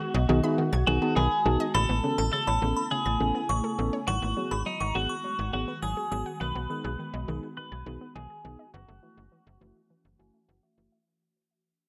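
A bright, compressed twelve-string electric guitar carries the melody up front through a phaser in this cool, melancholic synth-pop excerpt at 103 BPM in F# dorian, tuned to A4 = 445 Hz, over a snappy, metallic slap-like FM bass and a mellow tine electric piano that plays fills at the start and again from 9.9 seconds. Detuned sawtooth unison plucks run arpeggios through delay, while an ethereal, airy pad holds sustained chords in the background with ensemble chorus and its own reverb, and a glassy, crystalline FM bell adds a second line between 1.7 and 6.2 seconds. From 1.7 seconds a filter sweep and fade-out begin as the chords move from Aadd9 through G#m7 and B6 to F#m7, all within a light reverb.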